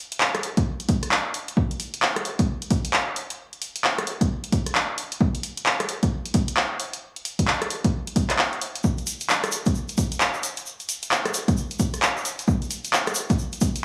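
A punchy analog drum machine opens this late-night, soulful UK garage groove at 0.1 s with handclaps, hi-hat and rim click, joined at 0.6 s by a punchy electronic kick. Both sit up front with the character of a large room, while the track as a whole carries light reverb and a small-room ambience at 132 BPM, with a 62% swing on the sixteenths. At 8.8 s a quieter egg shaker adds a grainy, bright, vintage and band-limited texture before this cut from a longer piece ends.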